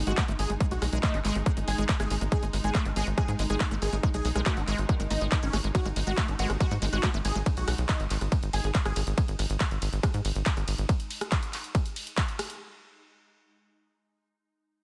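A straight 4/4 pulse drives this psychedelic trance drop, cut from a longer piece: an overdriven, distorted electronic kick sits up front beside a techno kit of handclaps, hi-hat, ride cymbal and rim click, its warm hats re-recorded in a large room, carrying on until 12.6 seconds. Beneath, a tight, punchy sawtooth sequencer bass with a filter pluck drives forward, while a squelchy, resonant liquid acid bass riff, treated with chorus, sidechain pumping and dub echo, plays in the background until 7.4 seconds. A huge, thick detuned supersaw carries the melody, compressed and coloured by phaser, sidechain pumping and tape echo, as a very quiet wobbling formant-sweep bass line and a bright, evolving wavetable pad of sustained chords hover behind in a digital ambience.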